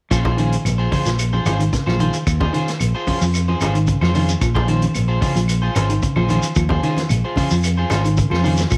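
Afrobeat at 112 BPM in Bb minor, hypnotic and defiant, this short cut from a longer piece rides a single Bbm9 chord over a growly, bright picked electric bass up front and a vintage drum kit with a punchy kick, medium-tuned snare, hi-hat and a rolled-off top. Two slightly broken-up electric guitars share the groove: a dark, fingered one plays low arpeggios in the background while a warm, picked one adds stabs colored by analog chorus and slapback echo. Woody claves, a grainy shekere and ringing, low-tuned congas with soft hands sit in the background, all inside light reverb and small room ambience.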